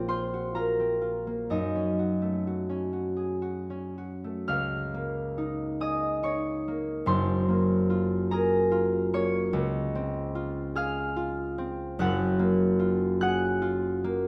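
A solo concert harp carries this short classical piece on its own, its ringing, fingerpicked strings sitting up front and spanning a broad register from Gb1 up to Gb6. The mood is peaceful and graceful, set in Db major and moving in a slow 6/8 at roughly 36 to 50 dotted-quarter beats per minute, with a rubato feel that lets the phrasing breathe. The opening passage colors the key with minor-tinged harmony, moving from Bbmadd9 to Gbm6 before the second passage arrives at 4.5 seconds on a Db69 chord. From there the harmony settles into lush major sonorities, alternating between Gbmaj9 and Dbmaj7. A moderate concert hall reverb with a 1.8-second decay surrounds the instrument's acoustic tone, giving each note a soft halo of space. The recording is a fragment of a longer work, ending at 14.3 seconds.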